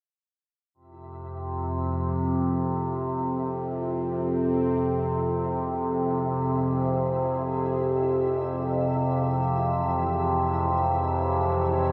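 A bright, detuned sawtooth pad with ring modulation and chorus fades in from the background at 0.7 s on an F minor chord, joined by a flickering, granular triangle texture and then an up-front, wave-folded drone with moving overtones, phaser and chorus, all in free time and bathed in a huge, wet reverb that gives this dark, unsettling ambient drone in F harmonic minor its cavernous depth before the harmony shifts to Db minor at 9.6 s.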